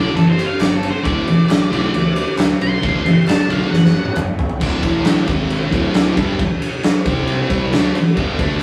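A rough rehearsal-room recording with tube saturation and a wet studio reverb carries this swaggering, rowdy garage rock excerpt in D major at 135 BPM in a straight 4/4. Up front, a double-tracked thick fuzz guitar plays a bright, picked riff over a growly, overdriven fingered bass and an oversized, low-tuned acoustic kit with a punchy kick, dark cymbals and a gritty, pumping big-room sound, while a very quiet, hollow group handclap sits close and dry. A dark octave-fuzz lead guitar solos until 4.1 s, with a drum fill from 3.7 s, before the chords move through D5, A5 and G#5 in the second half.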